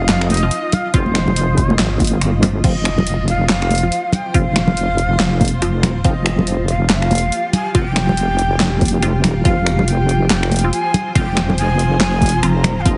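A swung, half-time groove drives this meditative, cavernous deep dubstep excerpt, with an overdriven electronic kick arriving at 0.9 seconds beneath an up-front drum kit of punchy snare, hi-hat, handclaps, finger snaps and crash, plus close, dry, high-tuned congas played with soft hands. A dark, chorused wobble bass sits up front, while a muted, phased dub chord stab with echo and a cloudy, evolving granular pad carrying gritty 12-bit texture and its own reverb hover in the background. Over this, a distant, breathy shakuhachi with unsteady vibrato and a soft chiff carries the melody through dub echo, all squeezed into a heavily compressed, radio-like sound with light reverb.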